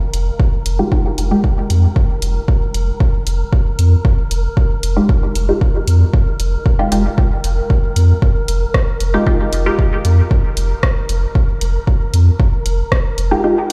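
Hypnotic and cavernous, this dub techno excerpt moves at 115 BPM in F minor, resting on a single Fm9 chord, with a punchy, up-front electronic kick and a clean, smooth sine sub bass given tube saturation and sidechain pumping. A deep house kit of dark hi-hats and rim clicks sits beneath muted, full-bodied sawtooth chord stabs with a short filter pluck, phaser and dub echo. A breathy, wind-like tuned noise texture with its own reverb hangs behind, and the whole piece sounds as if played on a big sound system in a bare stone room.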